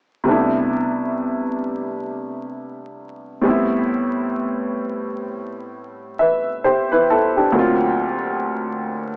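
Nostalgic and cosy, this slow hip hop fragment sits at 66 BPM in 4/4 with a lazy 16th-note swing, cut from a longer piece in C major. A woody, slightly detuned upright piano plays accompaniment up front from 0.2 to 9.2 seconds, moving through Cmaj13, Am9 and a closing D7alt. The sound carries the character of old cassette tape, with warbly pitch drift, vinyl crackle, a small-speaker tone and a moderate studio ambience.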